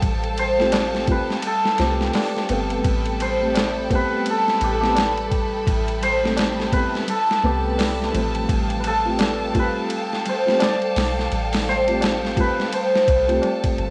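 A hypnotic, smoky trip hop groove with a lazy swing, cut from a longer piece and heard in a small room as a home cassette recording. A shimmering, hammered cimbalom carries the melody through tape echo, while a focused, close violin section holds rich bowed chords with vibrato above it and a thumb-plucked concert harp rings out arpeggios in the background. The felt-muted upright piano joins at 0.6 seconds with dark, intimate accompaniment, its tremolo and audible action noise giving it a vintage feel. Underneath, a soft, round 808-style bass supplies deep sine tones with a fast attack that decays into darkness. Up front, a gritty, compressed boom bap drum kit sounds pitched down, with a thumpy kick, high-tuned snare, hi-hat and ride, while a low-tuned, dry tabla with a short ring adds percussion from 0.7 seconds. The harmony moves from Fadd9/A to Am9 and back to Fadd9/A.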